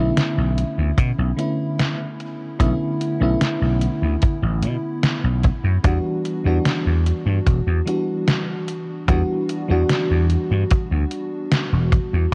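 A cassette-tape haze with light reverb and a digital ambience wraps this woozy, nostalgic vaporwave excerpt, which moves from Bm11 to Em9 at 5.8 seconds. A lush, dreamy FM electric piano with a soft pad layer carries the harmony, its detuned, mellow tone shimmering with tremolo, chorus and tape echo, while a bright, growly vintage slap bass with tube saturation punches underneath. A detuned 8-bit digital drum machine adds overdriven hi-hat and snare through gated reverb, and a dry, tight acoustic kick with a rolled-off top sits up front from 1.0 seconds.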